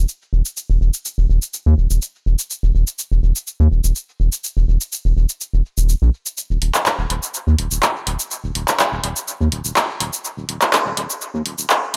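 Light reverb and a high-pass filter shape this echo-heavy cut from a longer clinical, sparse minimal techno track at 124 BPM in a straight 4/4, where a round, dark analog bass spanning Eb1 to Eb2 sits up front from the start, a punchy, tape-toned drum machine of cabasa, handclaps and hi-hat bathed in dub echo joins at 0.1 seconds, and a build-up takes hold from 6.4 seconds to the end at 12.0 seconds.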